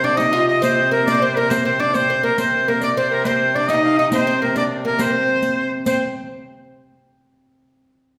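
In a straight 6/8 at 138 BPM, this short cut from a longer medieval dance in C minor feels ancient and mysterious. A bright, folk-style shawm carries the melody up front with vibrato. An airy tenor recorder sits in the background and a woody, fretless oud with doubled strings plays second lines, all over a ringing gut-string viola da gamba drone on C3. A close, dry riq with dark jingles joins at 0.2 s, while a wet recital-hall reverb gives the shawm and gamba a distant, churchlike space.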